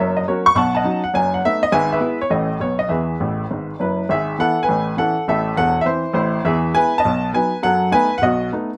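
A clear upright piano carries this short cut from a longer stride piano performance on its own from 0.0 to 8.7 s, ranging from E1 up to C#6 with a woody, intimate tone and audible action noise that puts the listener close to the instrument. The mood is swinging and playful, moving at a brisk 203 BPM in 4/4 with a 64% swing on the eighth notes, in E major with the tuning set at A4 = 439 Hz. The harmony travels from F# through B9, B7/F#, E/G#, A and B before landing on E, and a piano fill from 3.2 to 4.1 s bridges into the next section at 4.1 s. That second passage moves through E/G#, A and a darkening Am before resolving to E and turning on B7. The sound is polished and up front, set in a moderate studio ambience with a short room decay that keeps the piano present.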